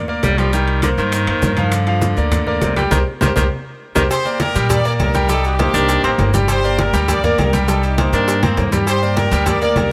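A driving salsa groove at 202 BPM in straight 4/4 opens this fiery G minor excerpt, with congas, bongos and cowbell, timbales and agogo bells, and grainy maracas sitting in the background of a close, dry mix. Up front, a woody, thumpy pizzicato upright bass anchors the low end while a bright, polished concert grand piano carries the accompaniment over chords that move between Gm7 and Cm7. A clear, punchy baritone saxophone with vintage vibrato supplies a second line almost from the start. The band hits an accent from 2.9 to 4.1 seconds, capped by a drum fill, before a loose horn section with light vibrato takes the melody at 4.1 seconds. Another brief drum fill arrives near the end, and the saxophone drops out at 8.8 seconds as the horns and rhythm section push on.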